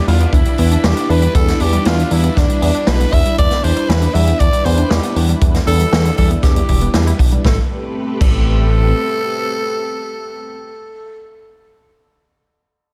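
A growling, breathy tenor saxophone sings the melody through delay from the first moment over lush, phased string-machine chords that pump with the beat and a chorused analog pluck arpeggio in the background, joined at once by a fat, tube-saturated analog bass, a boomy, distant kick and a roomy swinging big-band kit of crash, hi-hat and snare, in this nocturnal, nostalgic synthwave piece at 118 BPM in A minor that moves from Em7 to Am9 at 7.4 seconds, with the rhythm section gone by 8.9 seconds so strings and saxophone carry on until the sax ends at 11.2 seconds.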